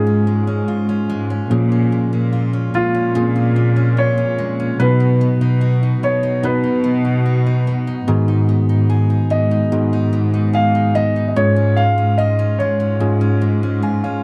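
A heartbroken pop ballad excerpt at 73 BPM opens with a concert grand piano carrying the melody with slapback echo, over a clean tine electric piano through a combo amp, full-bodied picked arpeggios on a jumbo steel-string acoustic guitar, and a bowed cello section playing the bass line with soft, intimate sul tasto tone and light vibrato, all in a dry, close 1970s-style studio sound with light reverb, the chords moving from Db/Ab through Bbm7, B and Abm7 back to Db/Ab before the electric piano adds a fill from 13.4 seconds.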